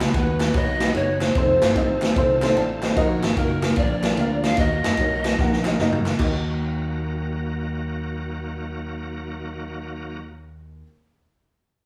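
A wet, large studio reverb wraps this short, live-in-one-room cut of uptempo gospel in Eb minor, swinging at 149 BPM with a fervent yet solemn air. A breathy bamboo pan flute carries the melody with vibrato and a tongued chiff, while a woody upright piano, its action noise audible, accompanies and drops in a fill at 2.4 seconds. Behind them a shouting tonewheel organ holds sustained chords in the background, lightly overdriven and turning through a slow rotary speaker with chorus vibrato. A dark, round fingered electric bass anchors the low end, and an up-front big-band drum kit with a punchy kick and medium-tuned snare drives the swing alongside a crisp, very quiet group handclap. Over the opening seconds the chords move from B through F7 to Eb minor, then to Bb and back to Eb minor. The drums play a fill from 5.4 seconds and stop with the handclaps near 6.3 seconds, leaving piano, organ and bass to carry the closing passage.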